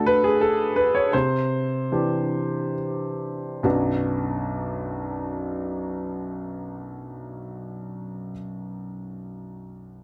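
Intimate and melancholic, this short neoclassical minimalist piano piece is cut from a longer work and sits in B minor, in 3/4 time. A warm grand piano plays solo across the full 10 seconds, ranging from B1 up to C#5. The tempo moves freely between 66 and 92 BPM with a rubato feel, slowing down through the opening phrase. The harmony moves from D to Cadd9, then settles on B minor as a second section begins at 3.6 seconds. The piano sounds close and up front, a little boxy, with audible action noise, all set in a light reverb.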